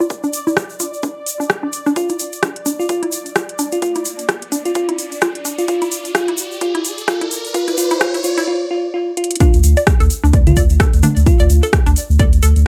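A swung 16th-note groove at 129 BPM drives this clinical, quirky minimal techno cut in D minor, where a punchy electronic kick, a house kit of metallic hi-hats and rim clicks, and a grainy egg shaker frame a hollow, bouncy square-wave pluck riff and a bubbling, resonant stepped-filter texture. A bell-like FM electric piano adds a mellow melody, and a filter sweep builds from the start, joined by an electronic riser from 4.0 seconds up to a short break at 8.5 seconds. The drop at 9.4 seconds then brings in a thick, saturated sub bass and a brief burst of overdriven electronic toms.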